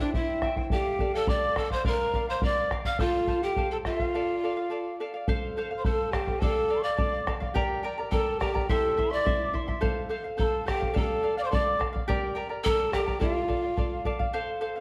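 Earthy and wistful, this Andean folk excerpt in D minor moves at 106 BPM in a straight 2/4, with a breathy bamboo pan flute carrying the up-front melody with vibrato and tongued chiff, a distant, hollow cane quena adding an airy straight-toned second line above it, a bright fingerpicked charango shimmering on its double strings, and a deep, band-limited bombo sitting up front, all set in a wet recital-hall reverb within a dark, warm production, with a brief break at 4.1 seconds before the second section begins at 5.3 seconds.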